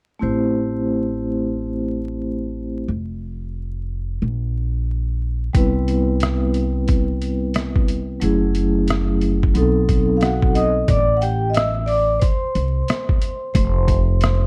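Jazz-hop with a smoky, cool mood at 90 BPM in A dorian, where a dark, ringing vibraphone with slow motor vibrato and a woody pizzicato upright bass open the piece before a break at 2.9 seconds, gritty, pitched-down, compressed sampler-style trip hop drums with a thumpy kick, hi-hat and rim click enter at 5.5 seconds, and the vibraphone takes a solo from 10.9 seconds, all in a dry, close 1970s-style recording with vinyl crackle.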